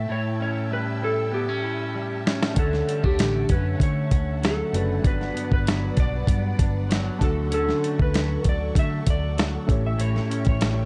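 Hazy and laid-back, this indie and bedroom pop excerpt moves at 97 BPM in D major, opening with a clean, dark lap steel melody drenched in lush chorus and tape echo over a twangy, slightly broken-up electric guitar with analog chorus and vibrato, while a vintage string machine of violas holds warbling, slow-attack chords alongside. A drum fill at 1.3 seconds brings in a gritty, compressed sampler-style kit with a thumpy kick, sitting up front, joined by glossy, detuned retro synth keys with tremolo in the background and a round, foam-muted picked bass. The chords drift from A7 through Dmaj7 and Gmaj7 and back, all wrapped in light reverb and a dark, warm production.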